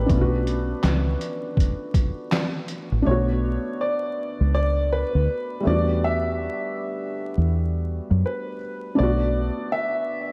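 Lo-fi hip hop with a reflective, nostalgic mood, this short excerpt moves with a lazy swing in 4/4. A woody, vintage upright piano carries the melody in a narrow upper range, its long sustain bathed in lush chorus and a diffuse ambient delay. Beneath it, a felt-muted upright piano supplies soft, intimate accompaniment, while a deep dub fingered electric bass adds a dark, round low end until 9.5 seconds. A trip hop sampler-style drum kit, compressed, pitched down and overdriven, plays only from 0.1 to 2.9 seconds, with a thumpy kick, medium-tuned snare, hi-hat and handclaps that sound muffled and re-recorded in a small room. The harmony drifts from Bm9 to Em11 and back to Bm7, all set in a dreamy mix soaked in plate reverb with a layer of vinyl crackle.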